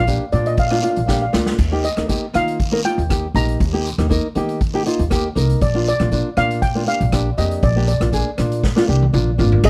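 A lead steel pan carries the melody in this sunny, bouncy calypso, its tone shimmering and metallic yet dark and smooth under medium rubber sticks. Beneath it, a small, up-front nylon-string guitar is fingerpicked over Bb and Eb harmony, while a pizzicato upright bass strung with steel gives a woody, growly bottom. The street-band drum kit sounds airy and polished in a big room, with a boomy kick, medium-tuned snare, hi-hat, crash, rim clicks and toms, and it plays fills at 1.1 and 8.6 seconds. A raspy guiro sits low in the mix with a live-room edge. The groove runs at 119 BPM in 4/4 with a slight sixteenth-note swing, and the close, dry 1970s-style studio sound carries light reverb.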